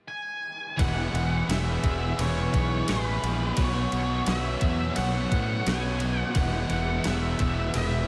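Shoegaze and dream pop rock, blissful and hazy, where a dark octave-fuzz lead guitar sings its melody through diffuse ambient delay alone from 0.1 s before the band enters at 0.8 s: a round, punchy overdriven fuzz bass up front, a crisp 8-bit drum machine with thumpy kick, fat snare and ride, a thick chorused fuzz guitar riff and a biting overdriven riff bathed in reverse reverb in the background, a second double-tracked overdriven guitar and very quiet twangy clean arpeggios, all drifting over E and Bsus2 in a lush, reverb-soaked hall.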